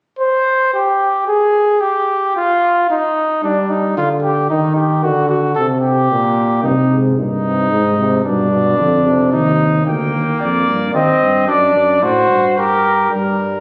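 Solemn and driving, this classical brass canzona in 3/4 at 111 BPM opens with a mellow trumpet alone on the second line, its light vibrato sounding distant and roomy, before a warm, smooth-topped trombone joins at 3.4 seconds, a soft-attacked tuba takes the bass from 6.6 seconds, and a second mellow trumpet with a smooth top carries the melody from 9.9 seconds, the whole captured on a phone in a recital hall with added club reverb and compression.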